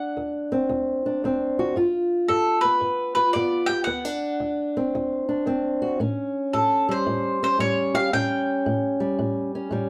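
Mandolin and fingerpicked acoustic guitar begin together in this short cut from a longer piece of acoustic country blues, soulful and swaggering, with a loose swing in 4/4. The mandolin carries the melody up front, its picked double strings giving a warm, round tone, lifted by a touch of plate reverb. Beneath it, the old ladder-braced guitar supplies the fingerpicked accompaniment, dark and woody with a boxy character and the dull edge of old strings. The harmony moves through dominant sevenths, from D7 to G7 at 1.8 seconds, back to D7, then to A7 at 6.0 seconds. Both instruments sit close in a moderate studio room, and the guitar rings on until 9.9 seconds, just after the mandolin stops near 9.7 seconds.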